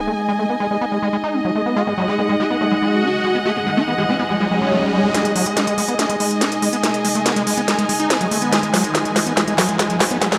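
A squelchy, distorted acid bass riff drives this intense, psychedelic trance excerpt, its resonant sawtooth tone thickened by delay, while a muted, veiled chamber string section adds texture and a bright, morphing wavetable pad with phaser holds sustained chords. A swarming, detuned rave lead carries the melody from 1.8 to 5.1 seconds, coloured by chorus, phaser and delay, and an electronic riser enters at 3.6 seconds. At 5.1 seconds an up-front, tape-warm garage drum kit with a cracking snare and crisp hats arrives with a fill, as a filter sweep on the bass and the sub drop and riser feed the build-up, all set in a moderate plate reverb.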